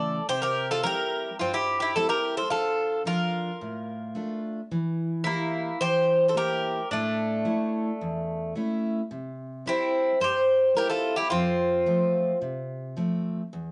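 A wet studio reverb surrounds this short Greek folk passage, cut from a longer piece, and the top end is gently rounded off above 10.3 kHz. The mood is brooding and cool, carried by a small bouzouki band in a straight 4/4 feel. Two picked bouzoukis sit up front with a bright, metallic double-string ring, some strings doubled at the octave; one carries the melody with a touch of plate reverb, while the other plays a second line beneath it, and both stop at 12.4 seconds. A picked steel-string jumbo acoustic guitar supplies full-bodied accompaniment, with audible finger squeak, and rings on alone until 13.7 seconds. The harmony moves through C, Dm, Edim and A, then returns to C before turning to F as the phrase repeats.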